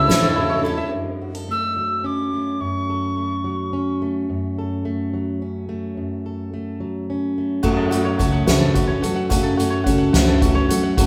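This wistful, stirring indie folk excerpt in F# minor, at 72 BPM in a straight 6/8, opens with an up-front wooden whistle melody with a pure, chiffy attack and vibrato, over a bright, boxy picked parlour guitar, a reedy, breathing harmonium in the background, ringing kora arpeggios, a woody, thumpy pizzicato upright bass and a brief touch of soft-mallet drums. From 0.9 seconds a full-bodied, fingerpicked jumbo acoustic guitar carries the accompaniment, with the kora ringing until 2.2 seconds and the whistle singing on until 4.0 seconds. At 7.6 seconds the arrangement builds as the bass, kora and picked guitar return with a drum fill on the up-front kit, its dark cymbals, fat snare and boomy kick sounding live in a large studio room.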